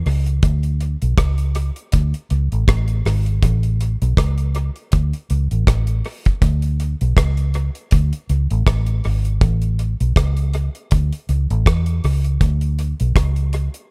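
A vintage electric bass sits up front in this roots reggae excerpt, its fingered, foam-muted tone dark, round and punchy through an amp, moving between G#1 and E2. Beside it, a deep acoustic reggae drum kit holds hi-hat, rim click and a tight kick, its dry sound carried into echo by an analog delay. The groove settles at a laid-back 80 BPM in 4/4, with a 57% swing on the sixteenths that gives the pulse a gentle lilt. Both parts enter together at the opening moment and shape a single meditative section, with the bass dropping out around 13.7 seconds, just before the drums finish near 13.9. The mix leans heavily on echo while keeping reverb to a minimum.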